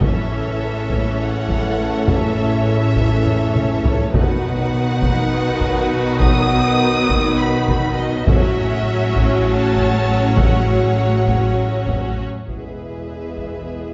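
Heroic and adventurous, this short cinematic cue is cut from a longer epic orchestral film score and drives forward in a brisk 7/8 metre. A lush violin section carries the melody high in its register with a soft attack and expressive vibrato, while a second, focused violin section plays a rich second line beneath it. Intense, clear violas fill in the accompaniment, and bowed cellos and woody double basses anchor the bass, the basses sitting further back in the blend. Mellow French horns and tight, vintage-toned trombones hold sustained chords in the background, and a distant taiko ensemble struck with heavy sticks pounds through the passage, breaking into a fill between 3.3 and 4.1 seconds. The harmony moves from A to B to F#m7/A before landing on E near the close, all bathed in the generous reverb of a concert hall or church.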